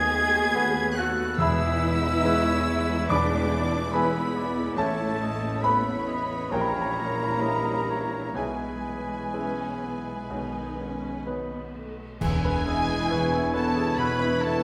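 A lush, passionate romantic classical passage for piano and orchestra unfolds at a slow, rubato pace, cut from a longer piece. A clear concert grand piano leads the melody across a broad range, with deep bass and short sustain, joined by a focused violin section with vibrato in the background. A pure, hollow silver flute, a rich, close second violin section, clarinet and oboe weave second lines, while bowed violas, dark French horn chords, a distant double bass section and cellos fill out the harmony and bass. Timpani on medium mallets mark the opening seconds, and a cymbal swell with clash cymbals and concert bass drum brings bright cymbals from 8.4 s. At 12.2 s the harmony settles on E with a band accent, as a punchy bassoon, distant trumpet stabs and a return of the timpani join the close, all set in a wet recital hall reverb.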